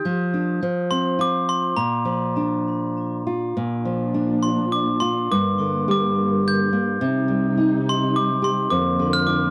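A children's lullaby in Bb major, this short passage cut from a longer piece moves at 104 BPM in a gentle 3/4 with a rubato feel, its mood tender and innocent. A fingerpicked nylon-string guitar opens alone, its classical tone full-bodied and up front, laying down the accompaniment over chords such as Dm/F, Bb, Gm and Cm before settling on Bb/F. At 0.9 seconds a glockenspiel struck with brass mallets enters with the melody, bright, sparkling and bell-like in its high register, its ringing notes carried on a tape echo. From 3.6 seconds a dark studio string section joins in the background, holding sustained bowed chords with vibrato and expressive portamento. The sound is that of a dry, close 1970s-style studio recording, touched with light reverb.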